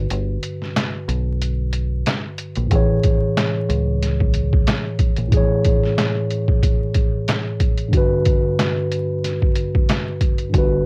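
Warm and soulful, this boom-bap hip-hop excerpt, cut from a longer piece, sways on a swung sixteenth-note feel in 4/4. A mellow tine electric piano carries the accompaniment throughout, clean and up front but colored by cassette tape and filtering, voicing lush Gmaj7 and Amaj7 chords. A deep dub fingered electric bass sits beneath it, dark, round and punchy, dropping out at 5.3 seconds and returning briefly near the end. The sampler-style drum kit is gritty, compressed and pitched down, with a thumpy kick, medium-tuned snare, hi-hat and handclaps; it opens on a break where the kick is muted from 1.4 to 2.7 seconds. Light reverb and vinyl crackle give the whole a homespun, lo-fi cassette character.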